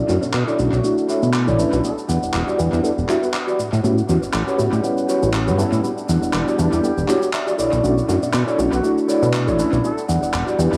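A swung 120 BPM groove in 4/4 drives this nostalgic, groovy filtered disco house excerpt in E dorian, where punchy, plucky analog bass sits up front under a reedy, overdriven electric piano with phaser and 12-bit grit, a dark, fingered clean electric guitar riff with dub echo and a fill at 6.3 seconds, layered electronic shaker and handclaps, very quiet bowed violin chords, and a tight vintage horn melody in the background entering at 0.7 seconds, all moving through Bm11, Em9 and A13 under a filter sweep and spring reverb in an echo-heavy mix.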